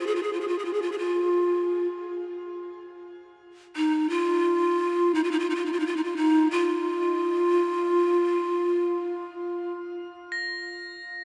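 Unfolding in free time, this haunting, spacious fragment of world meditation music in F minor pentatonic features up-front, breathy large pan pipes carrying a cane-toned, chiffy melody through shimmer reverb and delay until 9.7 seconds, while high, bell-like crotales with a vintage, band-limited ring sound at the opening and return alone from 10.3 to 11.2 seconds, all bathed in a cathedral reverb.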